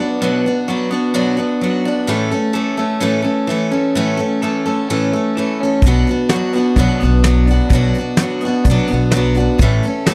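Hopeful and open-road in spirit, this short folk rock and heartland rock cut moves at 128 BPM in a straight 4/4, opening with a bright, full-bodied picked steel-string acoustic guitar alongside a slightly broken-up electric guitar riff bathed in spring reverb, over chords shifting between Bm and A. At 5.8 seconds a woody, growly pizzicato upright bass and a soft brush drum kit with a fat snare and tight kick join in, sitting up front. The dry, close 1970s-style studio sound carries a light reverb.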